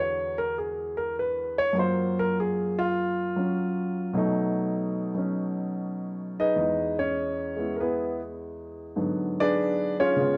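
Smoky and swinging, this solo jazz excerpt moves at 100 BPM in 4/4 with a 69% swing on the eighth notes, tuned slightly above standard pitch. A single upright piano carries the whole 10.4 seconds, its warm, woody, polished tone sitting up front with long sustain as it ranges from E2 to D#5 through chords such as E9, F#maj7, B7 and Emaj7 before arriving at G#m7b5. Close, detailed microphones and light reverb keep the instrument present, and the passage is cut from a longer piece.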